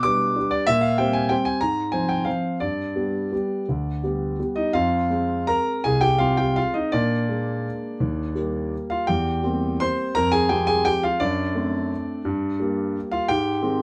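Elegant and wistful, this short classical piano waltz in 3/4 sways with rubato at 158-199 BPM, as a solo concert grand piano with a deep bass and an up-front presence ranges from C2 to D6 through chords such as G/B, Fm/Ab and G in light reverb, before a new section at 4.7 seconds moves through Fm, Bb7 and Eb to Abmaj7 near the cut at 13.8 seconds.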